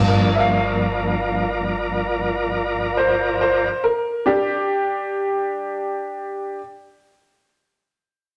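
A slightly detuned, up-front upright piano carries the second line in this brooding, soulful blues fragment, its brilliant tone, long sustain and audible action noise entering at 0.4 s and ringing on alone until 6.6 s. Beneath it at the start, a smooth tonewheel organ holds sustained chords through a slow rotary speaker with vibrato, sitting close to the listener. A clean, picked electric guitar adds warm accompaniment in its lower register through a tremolo effect, while a very quiet tine electric piano shimmers through a combo amp with a fast tremolo. A pizzicato upright bass with steel strings anchors a dark, woody G1 under the band's single Gm7 chord in a straight 12/8, before the accompanying parts fall away around 3.7 s. The whole take sits in a stone room's reverb with the rough, tube-saturated character of a rehearsal-room recording, and it is cut from a longer piece.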